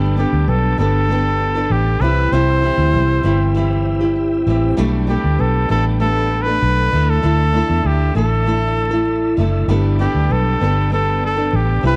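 Acoustic pop with a heartfelt, carefree mood, this excerpt sets a clear, vibrato-tinged trumpet melody up front from 0.2 seconds over a dark, round, foam-muted electric bass and a bright, fresh-strung nylon-string guitar. A very quiet, full-bodied fingerpicked steel-string guitar plays arpeggios beneath, while a faint tonewheel organ holds sustained chords through a fast rotary speaker with key click. The mix is dark and warm, set in a small room with light reverb and a layer of vinyl crackle, moving through chords such as Gadd9, C and Dsus2.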